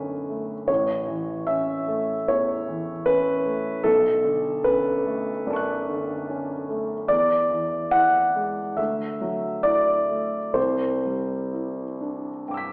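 Dreamy and hazy, this short impressionist solo piano passage drifts in a rubato 4/4, its pulse wandering between 62 and 78 BPM. A concert grand carries everything alone for the full 12.7 seconds, sounding clear and natural, with a deep bass and an up-front presence as it ranges from A1 up to B6. The harmony glides from Bm9 to A, returns to Bm9, then moves through E7 and Dadd9 before settling on Cadd9 near 10.6 seconds. A generous scoring-stage reverb gives the sense of a church or concert hall, yet the overall sound is narrowed into a thin, AM-radio character. Cut from a longer piece, the fragment feels like a passing reverie caught mid-thought.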